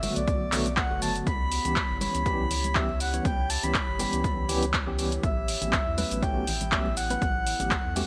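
Set in a light digital ambience, this late-night, hypnotic deep house excerpt carries a breathy, flute-like synth lead through chorus, tremolo and dub echo, over a warbly, lo-fi tape-like pad in the background and worn, slightly out-of-tune tine electric piano stabs through tape echo; a round, mellow sub bass pumps with the pad and piano against the sidechain, while a punchy, up-front analog drum machine of handclaps, hi-hat and shaker sits beside soft, dry congas, and an overdriven electronic kick enters at 0.3 s.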